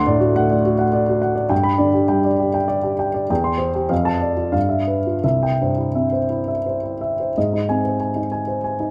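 A warm upright piano carries this short solo romantic character piece, its woody, intimate tone sitting up front with the clatter of its action clearly audible. The music is lyrical and passionate, moving in 3/4 with a rubato feel that lets the tempo drift between 80 and 106 BPM in C major. Across a range from C2 to C6, the harmony travels from D7 through G, C/E, Dm/F and G6 before settling on C. At 7.4 seconds a new section opens on an Ab chord, a harmonic turn that colours the close of this cut-off passage from a longer work. Close, detailed microphones capture the piano's natural character, set within a moderate recital hall reverb.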